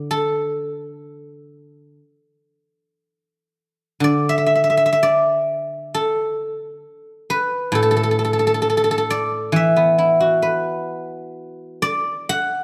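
A moderate recital-hall reverb surrounds this short solo passage of Chinese traditional music, taken from a longer piece, with the guzheng sitting up front in the sound. The acoustic guzheng, played with fingerpicks, has a silvery, ringing tone, and its part spans both its low register and its high notes in a free, rubato feel. The mood is pastoral and serene, and the music moves into a new section at 4.0 seconds before the passage ends at 12.6 seconds.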